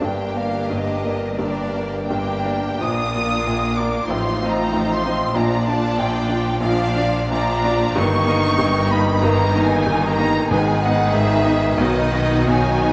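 Classical music in 4/4 with a tragic, passionate mood, moving with rubato at roughly 81-97 BPM in this short passage cut from a longer piece. A bright, brilliant baby grand piano sits up front carrying the melody with long sustain, joined by a lush symphonic violin section with a smooth top, while a clear studio violin section and an airy flute section trace second lines in the background. Beneath them a rich viola section supplies accompaniment, a mellow French horn section holds very quiet, distant sustained chords until 12.0 seconds, and focused cello and smooth, distant double bass sections anchor the bass. The harmony moves from G minor through Bb, F7/A and D#7/G before turning to G#m and B near the close. Soft-mallet timpani add very quiet, round tones between 10.5 and 11.4 seconds, and a moderate scoring-stage reverb gives the ensemble a spacious bloom.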